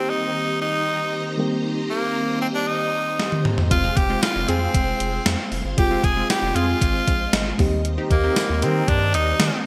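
Dramatic and nostalgic, this 1980s-style pop excerpt in C minor moves at 116 BPM, opening with a raspy, gritty tenor saxophone melody carrying digital delay up front over a mellow FM electric piano with chorus and phaser and a swirling, phased string machine sustaining chords in the background. At 3.2 seconds a drum fill brings in a gated 80s digital drum machine with a thumpy kick and gated reverb snare, joined shortly by a round, deep analog bass and a punchy, funky polysynth comp with chorus and delay tucked behind. The electric piano adds a fill near 7.1 seconds as the chords return from Fm to Cm7/Eb, all set in a lush hall reverb with bright digital production.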